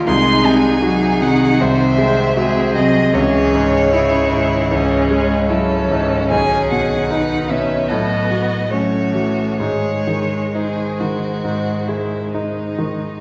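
Solemn and elegiac, this slow romantic movement for piano quintet unfolds with rubato as a single warm, vibrato-laden violin carries the smooth melody over a brilliant, worn concert grand with deep bass up front, while a rich second violin and a cello set in the background trace a second line and a distant viola adds bowed accompaniment, all heard from further back in a reverberant recital hall, in an excerpt cut from a longer piece.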